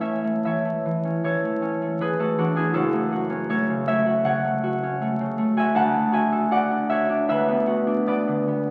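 A solo concert harp, warm and ringing, sits up front in this peaceful, graceful classical excerpt in A major at 79 BPM with a rubato feel, its fingerpicked lines moving through A, F#m, D and Bm/D across a range of F#1 to A5 in a reverberant recital hall, heard through the crackle of a very old 78 rpm record.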